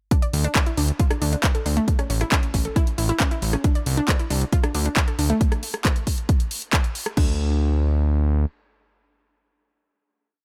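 Uplifting trance at 136 BPM in D minor, driving and euphoric, opens straight into a drop where a punchy, overdriven four-on-the-floor kick and a bright house kit of hi-hats, handclaps, rim clicks and crash cymbal drive alongside a lush, wave-folded unison pluck arpeggio with sidechain pumping and digital delay, while a fat, detuned sawtooth bass with tube saturation pumps off the beat before a final note rings from 7.2 seconds to 10.4 seconds in a dry mix.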